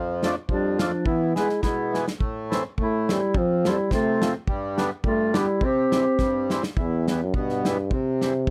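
A light reverb wraps this short, bouncy cut from an alpine dance band piece, a festive folk tune in C major at 106 BPM in 2/4 with a gentle swing on the eighths. The accordion opens the excerpt alone, reedy and full, sitting up front as it carries the accompaniment through chords that move from Dm/F and E toward Am, F, G and C. An acoustic drum kit with a tight kick and a medium-tuned snare joins at 0.2 seconds, adding short fills, one at 1.9 seconds and another just before the shift into the closing section at 6.8 seconds. The mellow euphonium takes the melody from 0.5 seconds, its soft attack and light vibrato giving it a classical poise at the front of the mix. Beside it, a clarinet plays a second line in a higher register, softly voiced and set back in a roomy distance, until it drops out at 6.5 seconds, leaving euphonium, accordion and drums to carry the final bars over Em and C.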